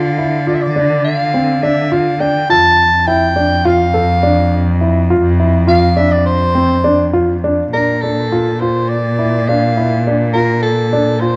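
A mellow soprano saxophone in a jazz style carries the melody from the opening, joined at once by a dark grand piano playing arpeggios, its worn, intimate tone accompanied by audible action noise, and a rich, focused bowed cello with vibrato holding the bass. This restless, shimmering piece of contemporary chamber music moves in 9/8 at 207 BPM counted in eighths, in Bb lydian, and is cut from a longer work. It opens on Dm, and at 7.7 s a new section settles onto Bbmaj7, all within a moderate concert hall reverb and a dark production.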